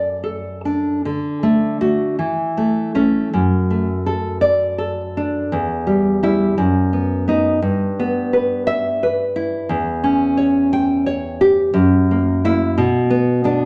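This is a romantic piece for solo classical guitar, cut from a longer work, with a sunny yet nostalgic mood and a flowing, rubato feel in a lilting 6/8. A single nylon-string guitar carries everything, fingerpicked and placed up front, its acoustic tone warm and intimate as it ranges from a deep E2 up to G5. The playing breathes freely, pulling and easing the pulse in a way that feels personal and unhurried. The harmony moves from bright, settled chords through minor colour and a diminished passing chord before an F#7 leads to a closing B minor at 12.8 seconds, lending the fragment a gently wistful turn. A generous studio reverb surrounds the guitar, giving it a spacious, glowing halo across the 13.7 seconds.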